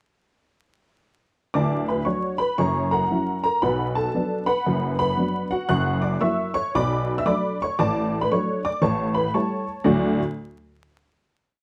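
This short, swinging stride piano piece carries a layer of vinyl crackle, and a detuned, jangly upright honky-tonk piano enters alone at 1.5 seconds, sitting up front and close with a woody, vintage character. At a lively 116 BPM in D major with a swung feel, it plays an exuberant stride bass beneath a tune in filled octaves, ranging from the deep low register to high sparkle. It moves through a single section before landing on a final D chord at 9.8 seconds, with the piano ringing until 10.2 seconds in a light reverb.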